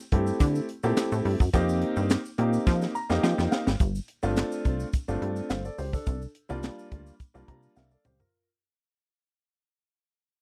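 A tight funk drum kit, a plucky analog bass and a concert grand piano start together at 0.1 seconds, setting up an early-eighties boogie funk groove in G minor at 106 BPM in straight 4/4, funky and danceable. The drums are acoustic and up front, with a high-tuned snare, a tight kick, hi-hat, toms and handclaps, while the bass is punchy and evolving, a sawtooth and pulse-wave sound with a fast attack and a decaying filter pluck. The grand piano plays accompaniment with a warm, intimate tone, natural long sustain, deep bass and audible action noise, moving through suspended ninth chords, D9sus4 and F9sus4, then G9sus4 and C9sus4 in the second part. A grainy, bright tube shaker sits distant in the background of a large room. Drum and piano fills mark the turn at 3.8 seconds, after which this excerpt from a longer piece fades out, with more fills near the close. The production is a dry, close recording in a 1970s studio style with little reverb.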